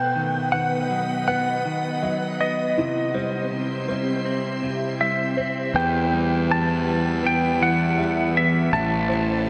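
Drenched in a huge, dreamy reverb, this brooding, melancholic rock fragment opens with a dark, compressed lap steel guitar singing the slide melody up front through a diffuse delay. Beneath it, a detuned, organ-like pad holds slow-attack chords with a shimmering chorus, while a clean, picked electric guitar and a felt-muted upright piano, boxy and intimate with audible action noise, spin arpeggios over a B, C, Em, Am progression. At 5.7 seconds a fuzzy, overdriven picked bass enters close and direct, thickening the low end.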